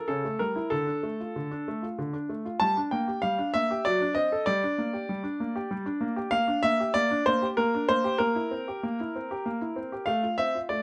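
Playful and cheerful, this brief excerpt from a classical-period piano sonatina moves in a three-beat metre at 96 BPM with a straight feel. A single grand piano carries everything on its own for the full 10.8 seconds, ranging from the C# below middle C up to A5. Its tone is clear and polished with long sustain, and the close, detailed miking places it up front and intimate, close enough that the soft noise of the action can be heard. The harmony opens on A7 with C# in the bass before settling into D minor, then wanders through G minor and D7 over F# and comes back to G minor. From there it passes through C7 over B flat and arrives on F major with A in the bass at 10.1 seconds. A light touch of reverb gives the instrument some air while keeping it present and distinct.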